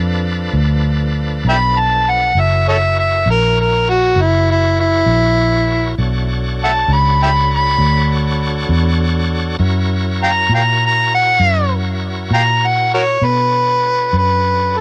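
Slow, mournful and smoky blues in 12/8 at 66 BPM in B minor, cut from a longer piece and captured on a home cassette with light reverb, where a bright tonewheel organ with key click and slow rotary speaker holds lightly overdriven sustained chords low in the mix over a dark, round, foam-muted electric bass up front, while a gritty, amplified harmonica enters at 1.5 s for a jazz-style solo full of scooped notes, tongue slaps and light vibrato as the chords move through G7, F#7 and Bm9.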